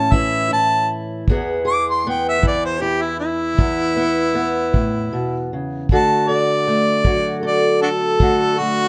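A mellow, up-front harmonica carries a jazz-style melody with light vibrato, tongue slaps and scooped notes over a woody, boxy fingerpicked parlour guitar on old strings and a tight kick drum with a rolled-off top in this laid-back, gritty acoustic country blues excerpt in 12/8, moving from A to E at 1.3 seconds and D at 5.9 seconds within a dark, warm production and moderate studio reverb, with plate reverb on the harmonica.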